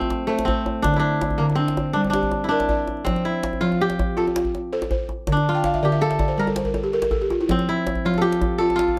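West African traditional string and xylophone music in F major, joyful and flowing at 108 BPM in 12/8, where a bright, ringing fingerpicked kora carries the melody up front over buzzing, woody balafon arpeggios played with soft rubber mallets, which break into a fill from 5.6 to 7.5 seconds, while a medium-tuned djembe sits close and dry beneath, all in light reverb in this short cut from a longer piece.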